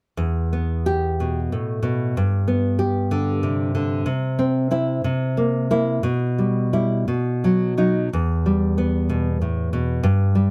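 Intimate and melancholic, this short fragment of a longer romantic piece is played on a solo nylon-string classical guitar. The guitar enters at 0.2 seconds and carries everything until 10.5 seconds, moving in 6/8 with a free, rubato feel. Its fingerpicked tone is full-bodied and deep, with an acoustic warmth, spanning from a low E2 up to G4. The harmony travels from Em through G and C, moves briefly to C7, then passes through Em/B and B before settling back on Em. Captured with close, detailed microphones and a nearly dry room, the guitar sits up front, so every note feels near and personal.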